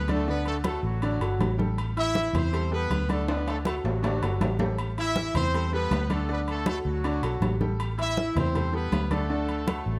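A clear horn section with a light vibrato carries the melody from the first moment, over a bright, woody upright piano and a dark, foam-muted electric bass that sits round and punchy up front in this sunny, festive salsa excerpt. Ringing congas played with soft hands and vintage, band-limited agogo bells and timbales fill out the percussion, with a drum fill from 3.3 to 4.8 seconds. The harmony alternates between D and Am7, and the close, detailed sound carries light reverb.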